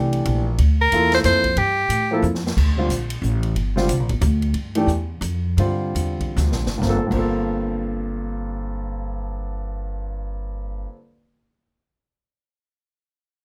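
A grand piano with long sustain and a woody pizzicato upright bass open this searching, hypnotic modal jazz fragment in G dorian, swinging in 3/4 between 127 and 182 BPM, joined at once by a big-band drum kit with a punchy kick, medium-tuned snare, hi-hat, ride and crash. A bright, forceful soprano saxophone with light vibrato states a short solo phrase from 0.8 to 2.2 s, and drum fills mark each turn as the harmony moves from Gm9 to Gm11 and the tempo slows between 4.5 and 6.8 s. The drums drop out at 7.2 s, leaving piano and bass to ring on in a moderate club ambience before the cut.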